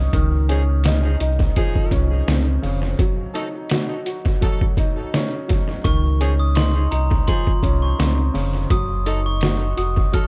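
Nostalgic and warm, this boom-bap hip-hop excerpt at 84 BPM in Db major sets a worn, woody upright piano over a deep sine sub bass and a compressed, pitched-down sampler-style drum kit with a thumpy kick and overdriven grit, while an edgy saxophone section adds punchy stabs in the background from 0.5 seconds, a bright, sparkling glockenspiel carries the melody from 5.8 seconds after a break at 3.0 seconds, and tape echo and a small room give the mix its echo-heavy haze.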